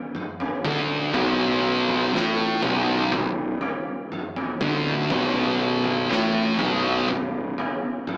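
A rough rehearsal-room recording with tube saturation, light reverb and a narrow AM radio character frames this short stretch of sludgy, heavy stoner and doom metal, cut from a longer piece. It moves at a slow 60 BPM in straight 4/4, sitting on B minor throughout. An oversized, low-tuned acoustic drum kit starts things off at 0.1 seconds, with a boomy kick, a fat snare and toms ringing in a big, pumping room, their gritty, saturated tone placed up front. A thick, double-tracked fuzz guitar enters at 0.6 seconds, carrying the riff with a picked, distorted tone spanning B1 to A3, warm and up front in the mix. Underneath, a fingered electric bass arrives at the same moment, recorded direct and through an amp, its growly, punchy overdrive reaching down to B0 while tucked into the background.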